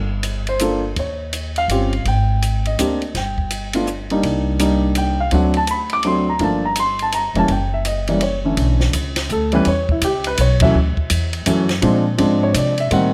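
An up-front baby grand piano carries the melody through this smoky, cool jazz piano trio in a swinging 3/4, its natural tone set in plate reverb as it moves through shifting harmonies from Gm7 and Eb9 toward Bm11 and A#9. Beneath it, a woody, pizzicato upright bass holds down the low end, while a compact cocktail kit adds dry, dark cymbals, a high-tuned snare and a punchy kick. The whole band hits an accent at 10.6 seconds in a moderate studio room, and the passage is cut from a longer piece.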